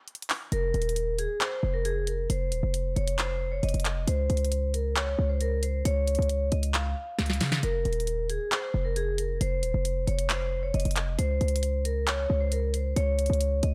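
The sound is dry and close, with little reverb and every part placed up front in this dark, menacing trap excerpt in F minor. A half-time feel at 135 BPM in 4/4 is carried by an electronic, produced trap kit of handclaps, bright hi-hats and a sharp snare, which opens with a brief break before the other parts arrive at 0.5 s. A hard-hitting 808-style bass drives the low end, its punchy, heavy sine tone layered with noise, with a fast attack and a decaying tail, ranging from Eb1 to Db3. Above it, a vibraphone struck with medium hard mallets and the motor off carries the melody between Ab4 and F5, its metallic, ringing voice sounding boxy, as if in a small room, softened by a low-pass filter and treated with delay. The harmony shifts from an F power chord to Db and back, with a drum fill at 7.2 s leading into the return, before the chords drop away at 11.2 s.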